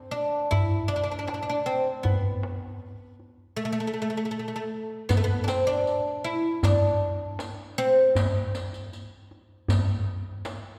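Persian modal ensemble music in a longing, hypnotic mood at 78 BPM in a straight 4/4, cut from a longer piece, where a woody, fretless, plectrum-plucked oud with double strings carries the up-front melody between A3 and E4 until 8.5 s over a tight, close tombak played with soft hands, while a quieter riq with bright, vintage, band-limited jingles joins at 5.1 s and plays alongside the tombak to the end at 10.6 s, all heard in the lingering reverb of a concert hall.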